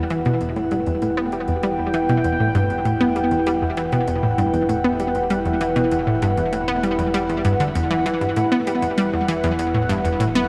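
A steady, straight 4/4 pulse at 98 BPM drives this mysterious, hypnotic stretch of sequencer-driven ambient space music in E minor, held on a single Em chord and cut from a longer piece. Up front, a round, detuned analog pluck repeats a riff through chorus, tape echo and shimmer reverb, while a sweeping, resonant pad sustains evolving chords above it with its own chorus and shimmer. Further back, a fat, thick analog bass on E1 and a booming drum machine with metallic hats, toms and tape echo both fade in beneath a lush hall reverb and a cassette-tape sheen.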